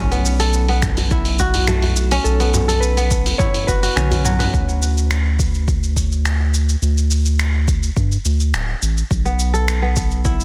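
A dry, densely limited mix frames this hypnotic, earthy organic downtempo excerpt at 105 BPM in a straight 4/4, with a round, nasal analog bass sitting up front under sidechain pumping while a mellow, ringing kora plays arpeggios through digital delay, dropping out at 5.7 seconds and returning at 9.3. A gritty, tape-kissed sampler-style kit of finger snaps, hi-hat, shaker and toms, its snare softly clipped, enters at 0.1 seconds and is joined by a deep electronic kick from 0.8 seconds. A very quiet, close djembe played with soft hands fills the opening until the drum fill that runs from 4.0 to 4.5 seconds. A dark, clean lap steel slides a brief delayed melody between 1.7 and 4.2 seconds, and the harmony moves from B5 to D5 and back to B5.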